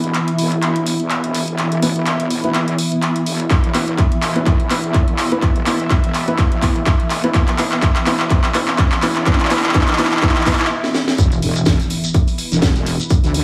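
A small, moderately reverberant room gives this bass house excerpt a tight, punchy sound, with overdriven, up-front drums cutting through a pumping haze of synths. The mood is swaggering and bouncy, carried by a swung groove in which a house drum kit of handclaps, hi-hat and cracking snare runs throughout, joined at 3.5 seconds by a punchy, layered electronic kick. Underneath, a heavy, detuned sawtooth wobble bass sits in the background, while a bright, resonant sawtooth pad holds sustained chords with vintage sampler grit. A cloudy granular pad drifts behind everything, and a dark, worn grand piano plays boxy, intimate stabs through delay, its action noise audible. The section is a build-up, with drum fills and a very quiet riser climbing toward a brief stop before the drop at 11.2 seconds, where an impact hits and a very quiet, airy gated 80s kit and a grainy, close shekere join the groove.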